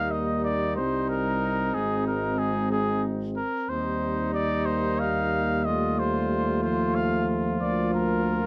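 A dark, warm production with light reverb frames this short classical brass quintet passage, cut from a longer piece, whose mood is noble and warm in a straight 6/8. The warm-toned trumpet carries the melody up front, while a second, clear trumpet with light vibrato, a soft attack and a smooth top sings a supporting line beneath it. A dark French horn sits in the background and a mellow trombone with gentle vibrato fills out the middle of the accompaniment. The tuba, also mellow and lightly vibrato-tinged, holds the bass up front, giving the ensemble a rounded foundation. All five players sound together for the full 8.5 seconds, moving through Eb, Cm and Ab before settling on Cm7/Eb and F7/Eb and arriving on Bb/D at 7.6 seconds.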